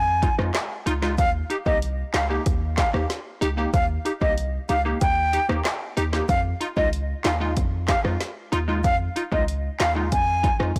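A straight deep house drum kit with a punchy kick, woody snare, dark hats, handclaps and rim clicks drives this tough, hypnotic dancehall excerpt, where a heavy, sine-based 808-style bass sits up front, a crisp, detuned wavetable chord stab pumps through a phaser over Fm7 and Eb, and an airy wooden flute carries the melody with vibrato and delay, all inside a blown-out, overdriven mix with light digital ambience.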